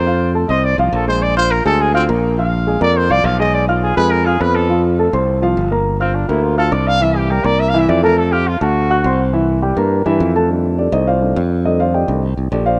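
Jazz at a lively, sunny 207 BPM in straight 4/4, this fragment of a longer piece features a mellow, distant-sounding trumpet with light vibrato taking the solo until 9.3 seconds over a growly, punchy fingered electric bass and a dark concert grand piano with deep lows, which takes its own solo from 10.5 seconds across changes such as Bb7, Gm7, D7 and a closing F13, all in a rough home demo mix with light reverb and studio ambience.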